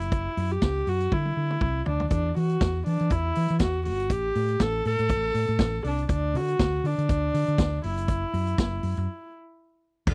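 A dark, floating viola played sul tasto with an airy bow carries the melody in this danceable, glamorous disco excerpt at 120 BPM in E minor, backed by a round hollow-body fingered electric bass and a vintage drum kit with a punchy kick and a rolled-off top, every part up front in a dry, close 1970s-style studio sound, with a drum fill at 1.1 seconds and a break at 9.1 seconds.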